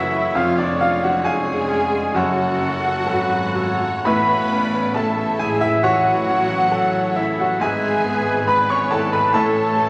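Tragic and brooding, this rubato classical passage is led by an intimate, up-front baby grand piano with long sustain and audible action noise, joined by a distant, very quiet violin section on melody, an airy hollow flute, a smooth studio violin section and a soft-attack oboe on second lines, intense violas in accompaniment, mellow horns and roomy trombones holding chords under tight trumpet stabs, and a bass of tuba, cellos and double basses, all set in a wet recital hall reverb with vinyl crackle.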